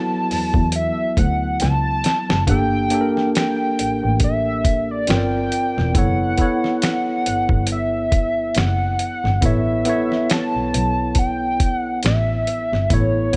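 A hollow, detuned square-wave lead with chorus and vibrato carries the melody over a barky, slightly out-of-tune tine electric piano from the very start of this relaxed neo-soul and R&B excerpt in D major, set at an unhurried 69 BPM with a gentle sixteenth-note swing. At 0.3 seconds a dark, bowed double bass with a soft, airy attack joins alongside a gritty, compressed, tape-warm soul drum kit whose thumpy kick, snare, hi-hat and finger snaps sit up front, with a drum fill at 1.6 seconds. Light digital reverb surrounds the parts as the chords move from Dmaj9 through Gm7 and F#m7 to A9.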